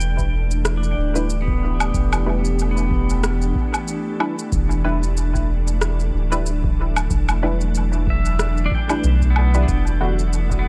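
Meditative and hazy, this ambient dub excerpt drifts at 93 BPM in E minor with a gentle swing, resting on a single Em7 chord. A soft, organ-like pad holds calm, full-bodied sustained chords bathed in ensemble chorus, while a clean, twangy pedal steel guitar plays arpeggios through tape echo, above a round, up-front sub bass. Overdriven electronic shaker, rim click and woodblock carry dub echo, a deep, tape-warm kick sits in the background from 0.2 seconds, and muted, sawtooth chord stabs with analog chorus and dub echo enter at 1.2 seconds.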